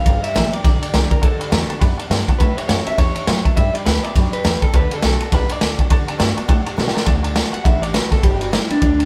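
Rockabilly with an upbeat, rowdy swing, this brief cut from a longer piece is led by a twangy, slightly broken-up electric guitar through a small old amp. A bright, full-bodied steel-string acoustic guitar and a worn, slightly detuned upright piano sit in the background, while a woody, thumpy pizzicato upright bass and a raw, gritty garage drum kit, placed up front with a punchy kick and dark cymbals, drive the band. The whole group plays live in one room with moderate reverb, and after a drum fill at 6.8 seconds the electric guitar takes a clean solo from 7.1 seconds.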